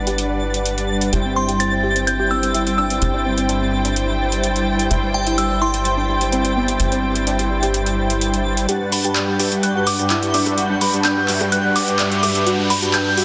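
A dense, heavily limited mix with light reverb carries this uplifting, euphoric progressive house fragment at 127 BPM in G major, where veiled, con sordino strings hold lush chords beneath a round, gentle pluck arpeggio with subtle chorus and tape echo, up-front detuned supersaw stabs through a low-pass filter, a punchy, dark sequencer bass that drops out at 8.7 s, a sparkling granular shimmer in the background, and an overdriven deep house kit of handclaps, metallic hi-hats, rim clicks and shaker, while a crystalline FM bell melody with 12-bit grit enters at 1.4 s and a build-up with a filter sweep on the bell brings in a background riser at 10.8 s.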